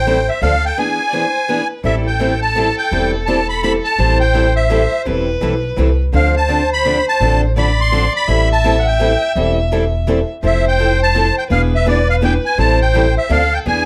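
Bittersweet yet fiery, this excerpt of acoustic string swing in A minor moves at 168 BPM in a swung 3/4, with a reedy, shimmering musette accordion up front carrying the melody over a woody, thumpy gut-string upright bass played pizzicato. A bowed violin adds a smooth, even second line with vibrato, while a bright archtop guitar and a boxy parlour steel-string guitar, the latter set further back with audible finger squeak, supply picked accompaniment from 0.1 seconds. The whole band sits in a moderate club reverb, and after a brief break from 0.8 to 1.8 seconds the harmony cycles through Am7, Dm7, Fmaj7 and E7.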